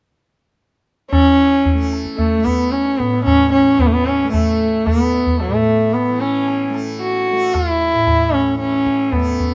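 A woody, bowed sarangi sits up front in this radiant, meditative fragment of Hindustani classical music, singing a gliding, lightly vibrato-touched melody in raga Bhupali over a buzzing, shimmering tanpura drone and a high-tuned, ringing tabla, the three playing together from 1.1 to 9.5 s in the close, moderate ambience of a small room.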